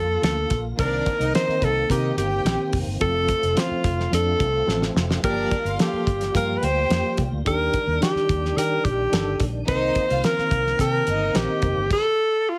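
Uptempo 1960s-style soul at 108 BPM in a straight 4/4, this short cut from a longer piece has an uplifting, warm mood. An alto saxophone carries the melody up front with a punchy, forceful jazz tone, smooth on top and shaded with vibrato. A dark, round electric bass, foam-muted and amped, anchors the low end under a cloth-damped drum kit that sounds thuddy and gritty, with a fat snare, tight kick and dark cymbals, plus a brief fill at 4.7 seconds. A reedy electric piano with fast tremolo adds accompaniment, while a tonewheel organ, lightly overdriven with chorus vibrato and a slow rotary speaker, holds full sustained chords in the background. A bowed violin section enters at 0.8 seconds with an expressive second line over chords moving from Bbmaj7 through Cm7, F, Gm7 and Ebmaj7. The mix carries light reverb and a heavily compressed, radio-like sound.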